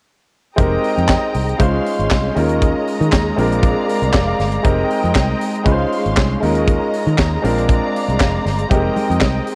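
A tight funk drum kit drives this disco excerpt at 118 BPM in straight 4/4, its dry, up-front sound built from a high-tuned snare, tight kick, hi-hat and handclaps, all carrying a cassette tape colour. Underneath, a fingered electric bass with a round, foam-muted tone anchors the F minor harmony, cycling through Fm11, Dbmaj7, Eb7sus4 and Bb7. A clear baby grand piano sits close in the mix as accompaniment, intimate enough that its action noise can be heard, and it steps forward with a fill from 3.6 to 4.6 seconds. A lush, bowed studio string section holds sustained chords with vibrato and a smooth top, adding a glamorous sheen. Very quiet, bright congas slip in only near the close, from 8.7 to 9.3 seconds, all within a small-room ambience of light reverb that gives this home cassette recording a driving feel.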